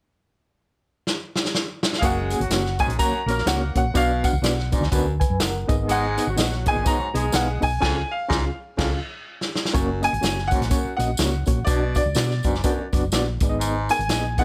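A bright, brilliant baby grand piano with a worn edge and short sustain carries the melody in this joyful, uptempo 1960s-style soul cut in F# major, set in plate reverb at 124 BPM with a swung 4/4 feel. A vintage drum kit sits up front with a punchy kick, dark cymbals and a rolled-off top, starting at 1.1 seconds and rolling into a fill before the full band arrives at 2.0 seconds. There the piano enters alongside a gritty, overdriven reed electric piano with fast tremolo through a combo amp, a clear baritone saxophone riffing low with a smooth top, a round, dark hollow-body bass, and a jingly tambourine tucked in the background. A mellow, distant horn section adds a tight second line in plate reverb until 7.6 seconds, just before a band accent and another drum fill lead into the final section. The chords move from F# through Bm and G#m to C#, then cycle back around, all wrapped in a light reverb in this fragment of a longer piece.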